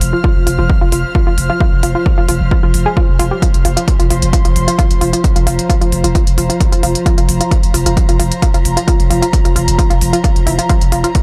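From the first moment, a growling, buzzy 808-style bass sits low beneath an eerie, metallic drone, smooth electronic hi-hats and a dark string section bowed sul tasto with light vibrato, each of them pumping against the beat. An analog pluck enters at 0.1 seconds with a detuned sawtooth-and-square riff, its round tone thickened by chorus, tube saturation and a dub echo. At 0.2 seconds the punchy, layered kick drum lands up front in the mix. The drone stays in the background, warbling and inharmonic with a vintage FM character, chorus and its own reverb, while the strings keep an intimate, close studio feel and the kick and hats carry a small-room character. A digital ambience surrounds the parts, and this relentless, intense cut of driving peak-time techno in 4/4 holds a single unbroken section for about 11 seconds.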